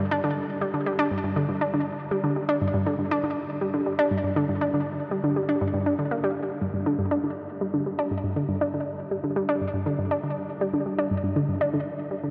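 A dreamy mix soaked in a huge ambient reverb, its tail lasting 8.6 seconds, opens this short cosmic, mysterious ambient excerpt, which is cut from a longer piece. A single analog pluck plays alone for the full 12.3 seconds, ranging from G2 to D4 at 120 BPM in a straight 4/4, tuned to A4 = 439 Hz. Its tone is round and nasal, built from sawtooth, square and sine waves with a noise layer and wave-folding, and shaped by a filter pluck with a fast attack and short decay. Chorus and tape echo color the synth, which sits bright and up front even as the reverb wash surrounds it. The result feels suspended and spacious, a lone voice drifting in a vast, echoing space.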